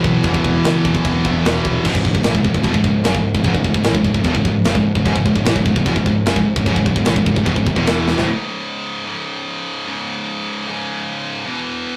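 Heavy metal with a relentless, heavy mood, where a tight, up-front distorted guitar drives the riff over a tight acoustic drum kit with china and crash cymbals, joined in the background by a scooped high-gain guitar, a double-tracked hollow-body overdriven guitar and a growling overdriven picked bass, all in a rough rehearsal-room sound with tube saturation, until a drum fill at 8.1 seconds hands off to the high-gain guitar alone from 8.3 to 12.0 seconds.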